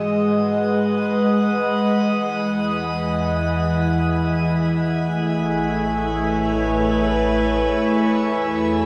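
Drifting in free time in E major, this short ambient excerpt from a longer piece feels serene and warm, its chords moving from G#m7 through Emaj7 and Amaj7 before settling on E at 8.1 seconds. A bright, detuned wavetable pad sits up front with chorus and its own reverb, morphing as it holds the chords, while a deep, ominous, rumbling drone with phaser fades in underneath as the bass. At 5.0 seconds a glassy, ethereal glass harmonica enters in the background on a single beating G#5, all bathed in a dark production with a long, wet shimmer reverb.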